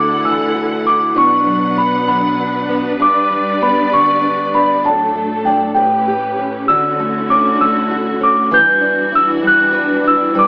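A bell-like celesta carries the melody up front from the start of this heartfelt, swaying pop excerpt in 6/8 at 65 BPM in D major, sitting high and sweet over a full-bodied fingerpicked steel-string acoustic guitar with audible finger squeak. A lush symphonic string section holds sustained chords beneath, bowed with vibrato and expressive portamento, as the harmony moves from Dadd9 through Bm, G and A7 to Dmaj7 and Em7. The band plays together in one room with moderate reverb, and the whole excerpt takes on a narrow, lo-fi AM radio color.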